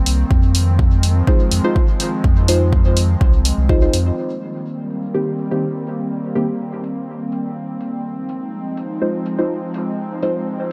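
A deep, mellow chord stab sits up front in this hazy, nocturnal dub techno excerpt, entering at 1.3 seconds with a dark, full-bodied, nasal tone, a filter pluck and a fast, decaying attack, washed in chorus, phaser, dub echo and sidechain pumping. At 124 BPM in a straight 4/4 in C minor, the harmony moves from Fm7 to Cm7 and back to Fm7. An airy, breathy pad holds sustained chords throughout, its detuned tone with a noise layer swelling in slowly and carrying chorus and sidechain pumping. In the opening stretch, an overdriven, deep kick drum sits forward over a round, sine-like sub bass with a sustained, pumping tone, until the kick stops at 3.8 seconds and the bass at 4.1. A layered, overdriven electronic hi-hat continues through the rest, filtered and re-recorded in a small room, with light reverb.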